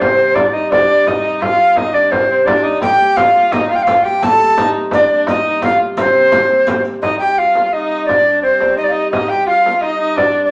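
In a driving triple metre with a straight feel, this ancient-sounding medieval dance excerpt puts a pure, chiffy tenor recorder up front on the melody with expressive vibrato, while a breathy, mellow alto recorder sits very quietly beneath alongside a rich, smoothly bowed viola on second lines, a dark, woody hurdy-gurdy holds a drone, and a softly handplayed frame drum keeps time, joined in the background from 2.8 to 6.9 s by a riq's jingles, all set in a wet studio reverb before a new section begins at 7.0 s.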